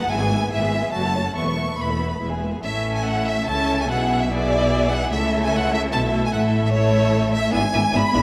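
A close, up-front violin section carries the melody, its rich, expressive vibrato singing high above the ensemble in this quick, spirited classical-period movement for string orchestra in A major, 146 BPM in 3/4 with a rubato feel. A second violin section plays the inner line just beneath it, while a smooth, even viola section provides accompaniment from a more distant position. The bass is shared by a focused double bass section with a smooth top and a cello section that sits in the background with its own expressive vibrato. All five sections play throughout the 8.2-second excerpt, cut from a longer piece, with harmony moving from E/G# and F#m through Esus4 to E before settling on A at 2.6 seconds and closing on E7/G#. A wet concert-hall reverb surrounds the ensemble, lending the lively bowed playing a generous sense of space.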